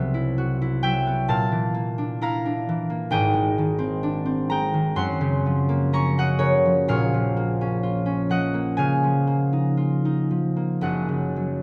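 A solo concert harp, fingerpicked and ringing, sits up front in this peaceful, dreamy classical excerpt, its warm tone reaching from Gb1 down low to Db6 up high. The playing moves with a gentle rubato through a drifting chain of major seventh sharp eleven chords, Cmaj7#11, Bbmaj7#11, Abmaj7#11 and Gbmaj7#11, before settling through Bbm and Db69 onto Gb6 at 10.8 seconds. A recital hall's lush reverb surrounds the harp with a soft, floating glow.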